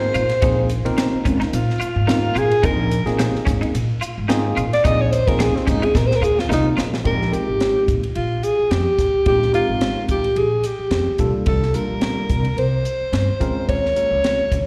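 Heard through a venue's PA with a light recital-hall reverb, this cut from a longer electric jazz fusion piece moves at 108 BPM in 4/4 with a swung sixteenth-note feel, slick and funky in mood. A breathy alto saxophone carries the melody up front, whispered and intimate with vibrato and a soft attack, soloing through the opening 7.0 seconds and colored by slapback and tape echo. Underneath, a barky tine electric piano adds bell-like, bright accompaniment with slapback echo, while an upright bass thumps out a woody, gut-string pizzicato line. A crisp fusion drum kit with a high-tuned snare, tight kick, hi-hat and ride plays throughout and delivers a fill from 5.9 seconds. A clean, compressed electric guitar places picked stabs with ensemble chorus in the background until 7.0 seconds, when the music settles into Bb dorian and the harmony shifts among suspended chords on Bb, C and Eb.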